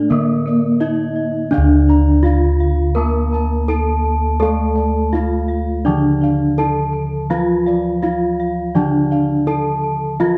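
Hypnotic and stately, this Javanese gamelan passage, cut from a longer piece, sets an up-front, close-miked bronze metallophone melody struck with a wooden mallet, its paired tuning producing shimmering beats, over a lower metallophone accompaniment with a vintage, band-limited sound. Mellow bossed gongs played with padded beaters carry the bass, while a bright, airy metallophone with a horn mallet and a higher set of dry, full-sounding bossed gongs, entering at 0.1 seconds, add arpeggios above. A moderate recital-hall reverb and a dark production give the ringing bronze a rounded, enveloping glow.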